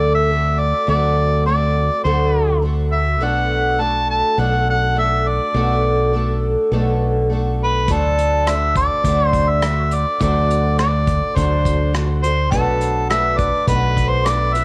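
Folk rock with a heartland rock lean, this 14.6-second excerpt moves at 103 BPM in a straight 4/4 with an open-road, hopeful mood, circling between D7 and Bm7 in D mixolydian. An up-front, mellow harmonica carries the melody with light vibrato and scooped notes, its vintage tone colored by cassette tape and analog delay, over a picked twelve-string acoustic guitar that sounds woody and shimmering with octave-doubled strings and a round, direct fingered electric bass. At 7.9 seconds an unplugged drum kit joins with hi-hat, a punchy kick and rim clicks played with bundle sticks, all within a dry home cassette recording.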